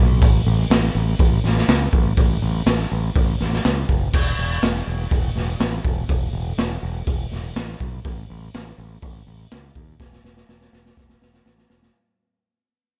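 Blissful and hazy, this short cut from a longer rock piece leans toward shoegaze and dream pop, moving in a straight 4/4 feel. A growling fingered electric bass opens the recording at the very start, its bright, overdriven tone sitting up front and reaching down to low E. A raw garage drum kit joins at 0.2 seconds, playing kick, snare, hi-hat and crash cymbal with a boomy kick, a medium-tuned snare and a gritty, saturated character from a small, pumping room with a rolled-off top. Both parts stay close and present, with little reverb around them. The whole passage is fading out, and a drum fill arrives at 10.0 seconds to carry it to its close.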